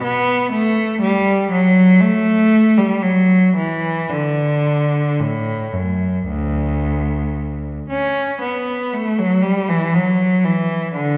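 A lone bowed cello opens this brief excerpt from a baroque-style suite movement, its focused, clear tone sung with vibrato and shaped with a free, rubato sense of time that feels serene and radiant. The player sits close and up front, while a wet recital-hall reverb rings from further back in the room. The opening phrase returns at 8.4 seconds, and the passage breaks off at 11.2 seconds.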